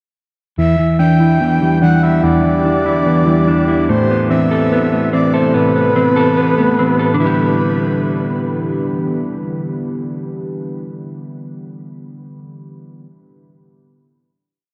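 Eerie and dark, this short half-time trap piece in E minor at 145 BPM pairs an up-front, clean electric guitar looping eighth-note arpeggios with warbly, detuned lo-fi synth keys, a deep ambient pad entering at 1.9 seconds under a filter sweep, and a breathy flute-like lead tracing a sparse counter-melody, all moving from Em7 to Amadd9 before settling on a final Em7 chord at 7.2 seconds in a dreamy, cathedral-soaked mix.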